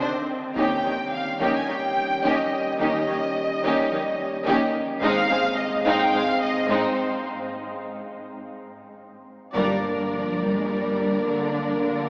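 Steeped in a cavernous cathedral reverb with a small-speaker sound, this relentless, dramatic cut from an epic orchestral film score in G phrygian moves at 107 BPM: a lush, up-front violin section sings the expressive vibrato melody from 0.6 s over a rich, distant second violin line, background violas with soft portamento, sustained chords from a roomy, dark French horn section, a woody cello bass and a warm, bowed double bass section, while a very quiet taiko ensemble with heavy sticks rumbles beneath until 6.1 s, before a break at 7.3 s gives way to a full-band accent at 9.6 s.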